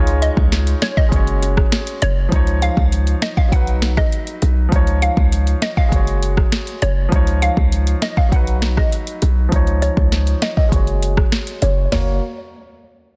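Dancehall at 100 BPM with a summery, bouncy mood, built on a punchy 808-style bass and an up-front electronic drum kit with a deep kick, sharp snare and metallic hats, while tight, high-tuned bongos sit in the background. A polished baby grand piano, softened by a low-pass filter, plays chords that move through C#add9, F#sus2 and B, and a hollow, detuned square-wave pluck carries the melody with chorus and delay. A filter sweep runs from 2.3 to 11.9 seconds in this short excerpt from a longer piece, and the dry, heavily limited mix feels dense and modern.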